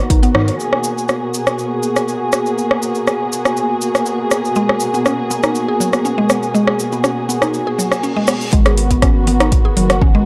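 A dark, lush studio string section holds sustained chords up front through this driving, earthy afro house excerpt at 121 BPM in G# minor, moving from B to G#m9 with sidechain pumping. An afro-pop drum kit with metallic hats, rim clicks and toms sits in a small room, a grainy, bright cabasa runs until 8.5 s, and a woody, mellow mallet-like synth pluck plays arpeggios through chorus, phaser, cassette tape and tape echo. After a reverse cymbal, the drop brings back a deep electronic kick and a round analog bass, captured in a dry, gritty hardware recording with light reverb.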